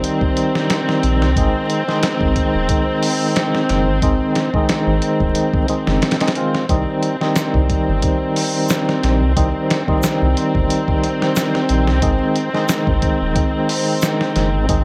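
A loping 90 BPM groove in 4/4 with a light swing on the sixteenths drives this smoky, brooding trip hop excerpt, cut from a longer piece and moving between C minor and A-flat. A dusty, sampler-style drum kit sits up front with a thumpy kick, a medium-tuned snare and hi-hat, its compressed, gritty sound carrying the tape-softened character of a kit re-recorded in a large room. A fat, lightly overdriven tonewheel organ, also up front, plays accompaniment with a percussive bite, coloured by tremolo, tape echo and a lo-fi 12-bit sampler grain. Beneath it, a rich, bowed string section holds smooth, even chords with gentle vibrato, while a deep, round dub sub bass enters at 1.0 seconds. A bright egg shaker joins in the background from 7.4 seconds, and vinyl crackle, light reverb and digital ambience give the recording a worn, hazy surface.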